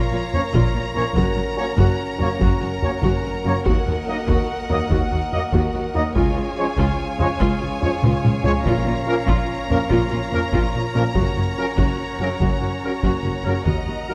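The recording has a dark, warm production, with a moderate scoring-stage reverb that gives this cut from a longer cinematic, epic orchestral film score a dramatic, relentless weight. A close, dry taiko ensemble struck with heavy sticks drives the 12/8 pulse from 0.3 seconds, with a drum fill at 8.0 seconds leading into a single soft-mallet timpani hit at 8.7 seconds. Over a rich, focused double bass section and a bright, lush cello section in the background, a clear chamber violin section carries the intense, vibrato-laden melody high in its range. A more distant symphonic violin section plays a second line beneath it, while a close, warm viola section supplies accompaniment. The woodwind section holds soft-attacked sustained chords alongside a tight trombone section and a very quiet, roomy French horn section, and a smooth-topped trumpet section adds stabs as the harmony cycles through Bbm, Gb, Ebm and Db.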